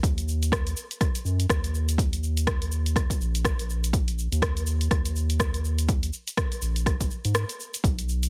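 A deep, round analog bass between Bb1 and Ab2, pumping with sidechain and carrying a filter sweep, opens alongside a punchy electronic kick and an up-front deep house kit of dark hi-hats, rim clicks and shaker, setting a hypnotic, spiritual afro house groove in Eb minor at 123 BPM with swung 16ths, all dry and heavily compressed like a radio broadcast, until the kick drops out from 7.4 to 7.8 seconds, shortly before the bass and kit close the cut at 8.3 seconds.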